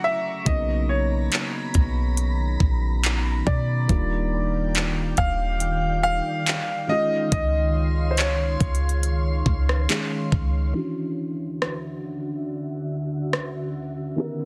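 Contemporary R&B with a tender, smooth mood, this fragment sets an up-front grand piano melody with digital delay over a soft, felt-muted upright piano, whose action noise can be heard, and a glassy, ethereal FM pad thickened with chorus and its own reverb. From 0.5 seconds, a deep, boomy 808-style bass and a trap kit with knocking kick, crisp hats, handclaps and rim clicks, roughened by 12-bit sampler grit, sit up front through Cbmaj9, Ebmaj9 and Dbmaj9 chords. The grand piano stops at 10.3 seconds, and the harmony then turns to Dmaj9 under a filter sweep, in a dense, heavily limited master that stays close and dry apart from the pad.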